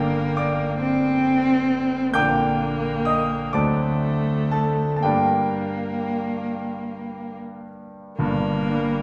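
This romantic classical duo for cello and grand piano carries an elegiac, solemn mood, moving slowly in a six-eight metre with a flexible, rubato feel. A single bowed cello sings the melody within a narrow middle register, its tone warm and focused with a smooth top and vibrato, sitting up front. The concert grand piano accompanies across a broad span from deep bass to high treble, its sound clear and natural with long sustain. Both instruments play throughout the 9-second excerpt, moving through a brief minor-key progression that passes to a dominant seventh at 3.5 seconds before settling back on the home chord at 5.0 seconds. A wet recital hall reverb surrounds the pair, giving the sense of a church or concert hall.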